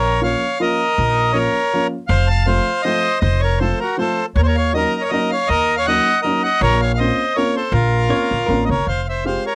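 Nostalgic and whirling, this short cut from a longer musette waltz in Bb harmonic minor spins at 160 BPM in a lightly swung 3/4, led by a reedy, full, dry-tuned accordion up front with a thumpy pizzicato upright bass, a dark, woody upright piano with short sustain, and a clean, picked hollow-body jazz guitar that slips in quietly in the background at 8.1 seconds, all captured as a home cassette recording in a snug booth.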